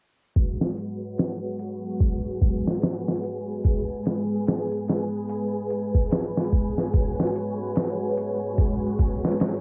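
Heard through the muffled haze of a home cassette recording with light reverb and a filter sweep running throughout, this brooding, dark trip hop passage moves at 73 BPM in G# minor with a swung 16th-note feel. From 0.4 s, pitched-down, compressed sampler drums sit up front with a thumpy kick, a medium-tuned snare and gritty, filtered hats, alongside mellow sawtooth string-machine cellos that hold sustained chords through phaser and ensemble chorus, shifting from G#m7 to F#sus24/G# at 6.9 s. At 1.6 s an airy, breathy, wind-like tuned noise layer drifts in beneath them, bathed in its own reverb.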